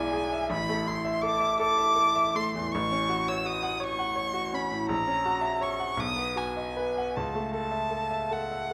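From the first moment, a violin and a grand piano sound together in this serene, lyrical romantic duo, a brief fragment of a longer piece lasting 8.7 seconds. A single bowed violin carries the melody high in its range, its warm tone smooth and even, with vibrato and a silky top, placed up front. The piano accompanies from deep in the bass up into the treble, its sound bright, brilliant and natural, and equally close to the listener. The music moves in 6/8 with uneven beats and free rubato, tuned to A4 = 439 Hz, and the harmony passes through chords such as F#m/A, F#7/A# and B before arriving at A/C#. A wet recital hall reverb with a 1.4 s decay surrounds the duo.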